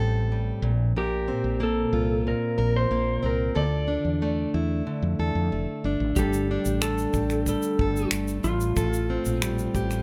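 A straight 4/4 pulse carries this sunny, heartfelt acoustic pop excerpt, cut from a longer piece. A fingerpicked steel-string acoustic guitar on a jumbo body sets the accompaniment from the start, full-bodied and warm with fresh strings, under a woody, hollow-body fretless electric bass that sits up front. At 1.0 s a clean, compressed lap steel guitar takes the melody, its fingered slide lines shaped with volume swells and a warm tone. The harmony moves through Bbsus2, Dmadd9 and Gsus2 before returning to Fadd9/A. At 6.2 s a natural country drum kit joins with finger snaps, shaker and a punchy kick, its studio room giving an airy polish. Close, detailed microphones and very little reverb keep the sound dry and intimate.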